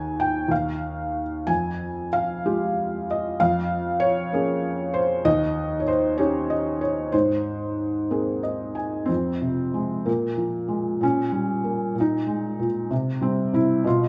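A felt-muted upright piano plays alone, soft and intimate with audible action noise, in a dark, wistful classical piece at 63 BPM in a rubato 6/8, moving from Ab major to F minor at 9.1 s after a brief fill at 8.1 s, set up front in a moderate recital hall reverb in this excerpt cut from a longer piece.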